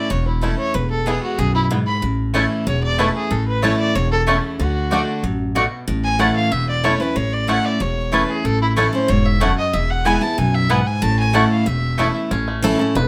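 Lively, joyful bluegrass in A major at 187 BPM opens with a nasal, airy-bowed fiddle singing the melody up front over a bright, full-bodied picked dreadnought guitar and a thumpy, woody upright bass, while a twangy fingerpicked banjo adds a second melodic line in the background from 0.4 seconds and a double-strung mandolin cuts in with stabs from 2.3 seconds, all set in a moderate studio reverb.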